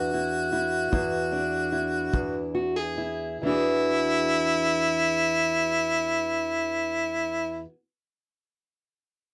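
A harmonica with a warm, roomy tone carries the melody in this soulful, gritty fragment of acoustic country blues, its jazz-inflected solo lines shaded by light vibrato and tongue slaps. Beneath it, a dark, boxy parlour-style steel-string guitar is fingerpicked up front, opening on an E7 chord in E mixolydian and tuned a touch below standard pitch at A4 = 438 Hz. The pulse sits at a slow 45 to 53 dotted-quarter beats per minute in a straight 12/8, easing back in tempo through the first 3.4 seconds. A tight kick drum, played with brushes and heard from a distance in the studio room, appears only briefly between 0.9 and 2.3 seconds. Light reverb gives the small ensemble an intimate, lived-in setting.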